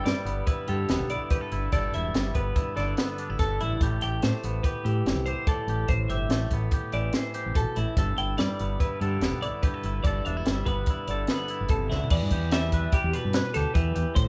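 Set in a straight 5/4 at 144 BPM, this playful, intricate math rock and midwest emo fragment, cut from a longer piece, moves through G major with a band playing together in one room under light reverb. A compact cocktail drum kit sits up front, its dry sound built on a punchy kick, a high-tuned snare, dark cymbals, hi-hat and toms. A growling fingered electric bass, overdriven through an amp, holds the low end. A twangy electric guitar provides clean, picked accompaniment, while a bright, compressed twelve-string electric guitar spins arpeggios above it. The harmony moves from G69 to Am9 and back to G69, and a drum fill at 11.9 seconds leads into a new passage at 12.1 seconds that settles on Em7.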